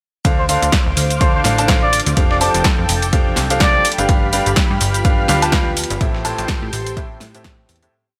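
An overdriven electronic kick drives a four-on-the-floor pulse at 125 BPM in 4/4, with a punchy analog drum machine adding programmed closed and half-open hats, shaker and a backbeat snare, all swung at 57% on the 16ths. Beneath it, a very quiet, gritty sampler-style kit plays a looped breakbeat with edits. This whole piece of piano house in A minor sits in the drop from start to finish, energetic yet bittersweet, moving through Dm7, F69, G7 and Am7 before fading out from 5.4 seconds. A clear concert grand with audible action noise plays a rhythmic chord riff in drop-2 voicings with digital delay, while a plucky, funky sawtooth-and-square bass carries a syncopated line, both pumping against the kick. A silky, string-like analog pad holds sustained chords in the background, joined at 1.2 seconds by a deep, dark ambient pad with chorus and reverb that slowly shifts underneath. From 0.4 to 3.9 seconds a close-miked, plunger-muted trumpet adds short, jazzy wah-wah solo phrases through digital delay, and the whole mix sits in light reverb with digital ambience.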